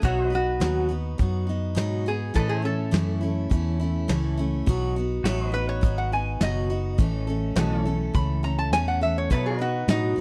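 Down-home and easygoing, this short honky-tonk and classic country excerpt moves at 104 BPM in a straight 4/4, cut from a longer piece. A lap resonator guitar, played with a steel bar and fingerpicks, carries the melody as a solo throughout, its tone metallic and nasal. A bright, full-bodied jumbo steel-string acoustic guitar is picked underneath, while a vintage foam-muted electric bass gives a dark, round, punchy low end and a soft brush kit with a punchy kick keeps time on hi-hat, kick and snare. Sitting in the background, a clean, compressed pedal steel guitar adds sustained chords with volume swells. The chords move between B and A, and the dry, close sound recalls a 1970s studio session.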